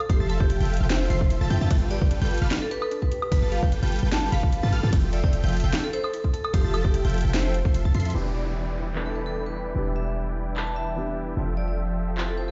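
This digital-sounding recording is heard as if through a big sound system in a bare, stone-reverberant room, with nothing above 7.7 kHz. It is a playful, bright future bass piece at 149 BPM in 4/4 with a half-time feel and light swing on the sixteenths, in F lydian, cut from a longer piece. A hard-clipped electronic kick sits up front alongside a deep, boomy 808-style bass with a sine core and noise layer. The trap kit adds a sharp snare, metallic filtered hats, handclaps, ride cymbal and woodblock, with a drum fill at 7.9 seconds. Huge, detuned supersaw chords with a moving notch pump against the kick beneath a ringing vibraphone melody struck with hard mallets and carried on tape echo, while two unison plucks, one full-bodied and wave-folded in the background and one very quiet and high, spin arpeggios through the opening drop. At 8.1 seconds the chords shift to Em7 as a dark, intimate grand piano with audible action noise joins an airy, breathy pad with chorus, and an electronic downlifter falls away until Fmaj7 returns near the end.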